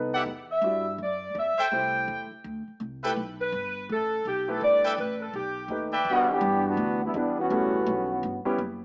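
A grand piano and a pizzicato upright bass open this joyful, swinging jazz fragment, cut from a longer piece and moving at a brisk 166 BPM in 4/4 with a swing feel. The piano sounds natural and up front in its accompanying role, while the bass, acoustic with steel strings, has a woody, dark tone underneath. A tight trumpet section adds clear, close-miked stabs with light vibrato, and from 0.5 s a mellow saxophone section carries the melody, tight and up front yet carrying a distant, roomy character. The harmony passes through chords such as Em9, Am7 and G69 before a B7alt sets up a new section at 6.1 s, where the trombone section takes a solo second line over Em7 and A9, its light vibrato and smooth top blending as an ensemble. The whole mix sits in a wet echo-chamber reverb with a small-speaker sound.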